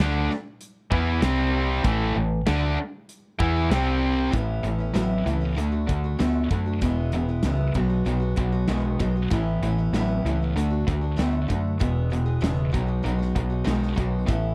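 Driving and swaggering, this classic rock passage, cut from a longer piece, rides a straight 4/4 groove in a dry, close 1970s-style studio sound with a small room reverb. Two electric guitars play the riff throughout: a tight, bright distorted guitar sits up front, while a raw, lo-fi overdriven garage guitar lies a little lower in the mix. A vintage foam-muted fingered bass, dark and round, sits up front beneath them, and a big rock drum kit with a punchy kick, medium-tuned snare and hi-hat adds smooth, big-room weight. The opening riff moves between A5 and C5 power chords, and at 4.3 seconds the harmony opens into Aadd9, D, E and B6. There a picked acoustic archtop guitar joins quietly in the background, its boxy tone carrying audible finger squeak.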